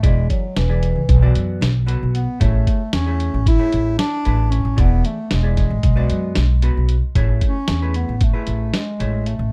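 Intricate and bright, this brief cut from a longer progressive instrumental piece moves in a straight 9/8 at 227 BPM counted in eighths, as a warm, present bass clarinet carries the melody through a touch of delay over a dark, clean hollow-body jazz guitar, a woody gut-strung upright bass plucked up front, and a compressed, muffled sampler-style kit with a thumpy kick, all cycling through E7, Bm7 and Amaj7 in a rough home demo mix with light reverb.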